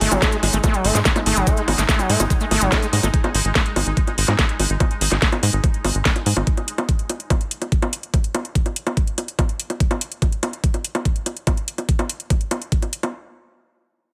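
Lightly reverberant and driving, this alien psychedelic trance excerpt at 144 BPM in 4/4 puts a tape-toned, knocking electronic kick up front beside a garage kit of cracking snare, metallic hats and bongos that runs to 13.1 seconds, over a punchy sawtooth sequencer bass, a squelchy, screaming distorted acid riff that stops at 3.1 seconds, a bright, detuned gated texture pulsing with sidechain pumping, a very quiet, moody ambient pad, and a grainy cabasa in the background.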